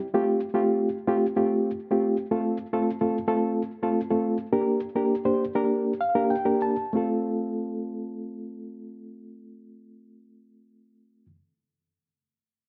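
Soul in a joyful, warm mood, this short passage, cut from a longer piece, features a lone reed electric piano playing from 0.1 to 11.3 seconds. The instrument sounds reedy and worn, slightly out of tune, clean and heard through its built-in speakers, sitting up front in the mix. Harmonic tremolo and a slapback echo color its tone, while a moderate plate reverb gives the room a lingering tail. The harmony opens on an Fadd9 chord, settles onto F, moves to G minor and returns to F near 6.9 seconds. The pace slows through the middle stretch, and a brief piano fill arrives at 5.7 seconds before the final chord.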